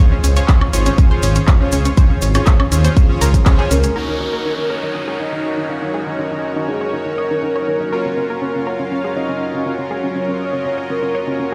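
A punchy, up-front electronic kick drives this euphoric, uplifting progressive house excerpt alongside a deep, rumbling detuned saw bass, a house drum kit with bright, low-pass-filtered hats, handclaps, woodblock and crash, and a grainy, dry cabasa in the background; these rhythm parts fall away by 4.1 s, while a round, chorused analog pluck plays arpeggios and a smooth soft supersaw plays stabs, both pumping with sidechain and dub echo throughout, a downlifter enters at 4.0 s, and from 3.7 s a full, octave-layered lead with vibrato, phaser and 12-bit sampler grit sings over a lush, thick unison pad, the whole mix heard through a big sound system in a bare room with large studio reverb.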